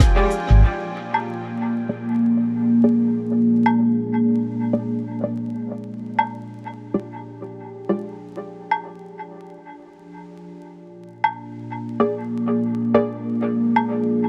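This hazy, deep ambient dub fragment, cut from a longer piece, opens with a band accent on an Fm69 chord. A moody, full-bodied pad of detuned sawtooth and sine voices with a sub octave sits alongside shaker and woodblock played with brushes in a studio room and treated with dub echo. At 0.5 seconds a round, amped fingered electric bass sounds a single Ab1 before the harmony settles on Bb7. The pad drifts through its slow attack and long release, washed in chorus and reverb as a filter sweep runs across it. A muted, detuned sawtooth chord stab with a fast filter pluck enters at 1.9 seconds and returns at 12.0 seconds, colored by chorus, cassette tape and dub echo under its own sweeping filter. At 95 BPM in 4/4 with a lazy swing on the sixteenths, the dark production sits in a small room with light reverb and a layer of vinyl crackle.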